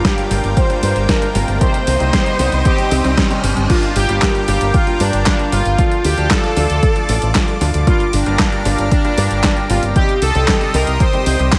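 A straight 4/4 pulse drives this bittersweet, nostalgic italo disco fragment, where a dry, overdriven analog kick and a tape-warm 12-bit drum machine with gated-reverb snare, handclaps, hi-hat and crash sit under a fat, brassy analog synth lead with chorus, vibrato and delay, a lush, detuned unison pad, clear grand piano stabs that are filter-swept until 3.7 seconds, up-front fingered electric bass with an envelope filter, and a background riser that enters at 0.2 seconds, all over a prominent crackle of vinyl.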